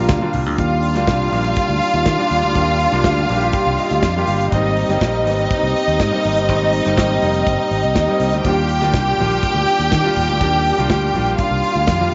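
A steady, straight 4/4 disco groove at 122 BPM drives this celebratory, joyful passage in Eb major, cut from a longer piece. A modern acoustic drum kit with a punchy kick, medium-tuned snare and hi-hat carries the pulse alongside a bright, growly fingered electric bass that sounds direct and amped. Up front, a lush, close string section plays a clear, focused second line with vibrato, while a concert grand piano with a natural tone and deep low end supplies the accompaniment and adds a short fill at 3.5 seconds. Behind them, a dark French horn section holds soft-attacked sustained chords, distant and roomy in a classical style. Very quiet, thick-skinned, low-tuned congas appear briefly at the start and return at 8.6 seconds, while the harmony moves from Gm7 to Ebmaj7 and Abmaj7 before settling back on Ebmaj7 at 8.4 seconds, all bathed in a moderate spring reverb with a softened top end.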